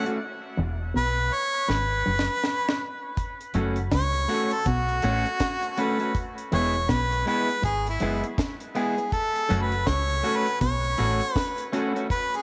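Serious and hypnotic, this roots reggae passage, cut from a longer piece, moves in 4/4 with a swung sixteenth-note feel. A clear, up-front harmonica carries the melody with light vibrato and a smooth top, stepping into a solo at 3.2 seconds as the chords shift between E and F# minor. Beneath it, an electric guitar at the edge of break-up adds twangy, fingered accompaniment, and both it and the harmonica trail dub echo. A woody upright piano stabs in the background, while a second electric guitar, bright and scooped through an envelope filter, picks a riff from 0.6 seconds alongside a dark, round, foam-muted fingered bass. The dry, deep drum kit, with its high-tuned snare and tight kick, stays muted until a fill carries it into the solo, and a moderate plate reverb with small room ambience surrounds the band.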